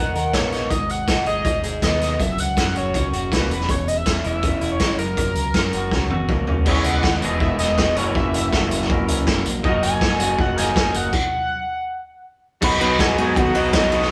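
Wistful and jangly, this 161 BPM indie rock excerpt in B major sets a screaming, detuned synth lead with chorus on the melody over a slightly broken-up, lo-fi guitar riff, a growling overdriven bass and an up-front, gritty garage drum kit with a boomy kick, joined at 6.7 seconds by a twangy, clean guitar in the background and at 12.6 seconds by a very quiet, mellow tine electric piano, as the band plays live in a stone room with moderate reverb, marked by a drum fill and a stop before the closing B chord.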